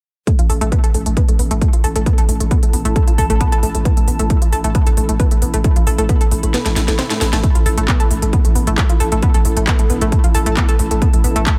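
Relentless and intense, this excerpt of driving peak-time techno runs at 134 BPM in a straight 4/4, built on a heavy, up-front electronic kick, a techno kit of cracking snare, handclaps and smooth hats that pump against the sidechain, and a growling, buzzy 808-style bass on A1 roughened by tube saturation and a low-pass filter. A round analog pluck riff between A3 and A4 carries chorus, delay and sidechain pumping, while from 1.6 seconds a cloudy, wave-folded granular pad drifts in the background with its own reverb. The kick drops out from 6.5 to 7.4 seconds for a drum fill and a very quiet electronic swell, and the second section begins at 7.4 seconds, all set in a digital ambience.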